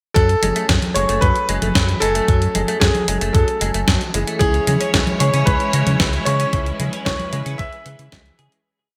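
A steady four-on-the-floor electronic kick and a clean 12-bit drum machine with a fat, up-front snare, closed hi-hat and high congas drive this short, nostalgic and melodramatic Italo disco piece at 113 BPM in F# minor, with a round, octave-jumping analog bass underneath. An up-front, brilliant concert grand piano carries a hook-based melody with delay and shimmer reverb, while a twangy, direct-recorded electric guitar plays a 16-step arpeggiated sequence through ensemble chorus, and a second, mellower piano adds off-beat chord stabs in the background. Lush, bowed strings enter at 4.4 s with sustained chords as the harmony moves from F#madd9 to C#m, and the bright 1980s-style digital production fades out from 5.8 s to 8.7 s.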